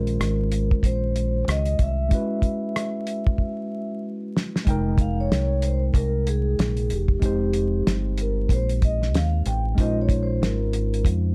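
Mellow and nocturnal, this jazz-hop excerpt moves at 94 BPM in 4/4 with a 60% swing on the sixteenths, set in F minor and tuned slightly sharp to A4 = 441 Hz. A deep dub fingered electric bass sits up front with a round, punchy tone, while a cloth-damped, thuddy acoustic drum kit plays dry and dark, with a fat snare, a tight kick, rim clicks, hi-hat and a rolled-off top. A worn, slightly out-of-tune tine electric piano carries the accompaniment through its built-in speakers, moving from Bbm11 to Dbm7, where a break begins at 2.1 seconds and a drum fill arrives at 3.4 seconds. At 4.7 seconds the piece turns to Fm11, and the vibraphone with soft mallets, which has carried the melody from the start, takes a solo, its metallic, ringing tone shimmering with a medium motor vibrato and an airy quality before the harmony settles back on Bbm11. Light reverb and a layer of vinyl crackle give the whole clip a dusty, late-night character.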